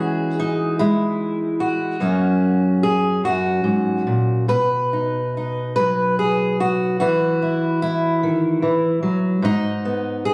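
Warm and peaceful, this short folk excerpt features a solo fingerpicked steel-string acoustic guitar in B major, moving in a rubato 6/8 at about 49 BPM through chords such as C#m/E, F#, B, Esus2 and G#m. The guitar sounds dark and up front, with audible finger squeak. A moderate small-room reverb surrounds the instrument, which was captured on a phone in the room.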